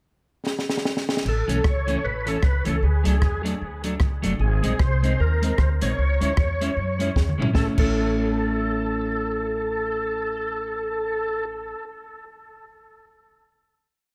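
A gritty, overdriven tonewheel organ leads this short, cheerful ska piece, its thick, percussive tone carrying a motif-based melody of call phrases up front, coloured by chorus vibrato, a slow rotary speaker and dub echo. A compact cocktail drum kit opens with a fill at 0.5 seconds, then drives a ska beat at 153 BPM in A major with a swung feel, its high-tuned snare, punchy kick, side-stick backbeat and dark cymbals sounding dry and close. At 1.3 seconds an upright bass joins with a woody, thumpy walking line on gut strings, and moments later, at 1.5 seconds, a clean electric guitar adds an off-beat chop treated with tube saturation, spring reverb and dub echo. The joyful progression moves from A through D, G# and C#m before a second drum fill at 7.2 seconds leads into a held final A chord, with the drums stopping at 7.9 seconds. A moderate club reverb gives the whole ensemble a lively room sound.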